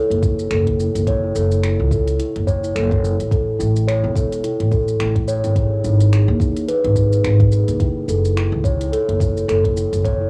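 A hazy, homespun sound frames this short cut from a longer piece, with light reverb, small-room ambience and the soft grain of a cassette recording. It is an organic downtempo groove at 107 BPM in 4/4, swung on the sixteenths, in F# dorian, and the mood is warm and meditative. Up front, a steel tongue drum struck with rubber mallets plays round, pure, ringing arpeggios, its airy tone passed through cassette tape, analog delay and plate reverb. A woody, thumpy upright bass with gut strings is plucked pizzicato just as prominently, carrying a sidechain pumping effect. Beneath them, a soft, overdriven electronic kick sits with a quiet organic electronic kit of finger snaps, smooth hi-hats and shaker, both drum parts treated with overdrive and studio reverb. The harmony moves from F#m7 to A at 3.3 seconds, G#5 at 5.6 seconds, and back to F#m7 at 7.8 seconds.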